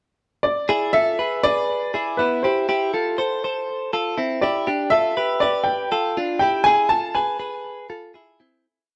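A dark, warm production sits inside a moderate echo-chamber reverb, giving this brief, complete indie pop piece a wistful, restless air at 121 BPM in a straight 4/4. A clear upright piano opens at 0.4 seconds with a woody, slightly detuned tone and short sustain, carrying an up-front melody built from hook-like motif phrases that span B4 to A5. At 0.7 seconds a direct-recorded clean electric guitar joins with ringing picked arpeggios, bright and twangy, compressed and doubled in thirds, its sound thickened by lush chorus and analog delay. The short pickup bar leads into a pre-chorus that moves through E7, Am7 and Gsus2 before resting on E. A fade-out begins at 6.7 seconds and carries the piece to its close as the guitar's figure rings on past the piano.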